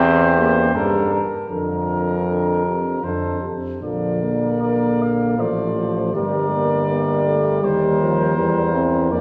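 Wet concert hall reverb, with a decay of about 1.8 seconds, surrounds this short classical brass quintet passage, which is cut from a longer piece and lasts 9.2 seconds. The mood is warm and triumphant, in a flexible, rubato three-beat metre. A mellow, distant trumpet carries the melody, while a close-miked flugelhorn with light vibrato sings a second line alongside it. The dark, punchy French horn and a vintage-toned trombone, also touched with light vibrato, fill out the accompaniment, and an up-front, bright bass trombone anchors the bottom. The harmony opens on a diminished chord, moves to Bb and G minor, passes through Eb, and lands on another diminished chord at 8.4 seconds.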